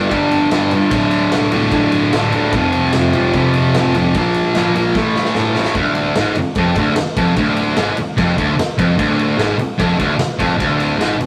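Garage rock with a raw, menacing edge drives along at a straight, steady pulse in this short cut from a longer piece. A thick, double-tracked fuzz guitar sits up front with a bright, distorted riff that moves mostly through power chords before settling onto a minor chord at 5.8 seconds, where the second section begins. Beneath it, a fingered electric bass adds a growly, overdriven fuzz, though it sits very quiet in the mix. The acoustic drum kit brings a punchy kick, a medium-tuned snare and ride cymbal, its gritty, rolled-off sound pumping in a stone room, with a fill from 5.0 to 5.8 seconds leading into the new section. The whole take has the rough feel of a rehearsal-room recording, with a wet ambience and saturated colour.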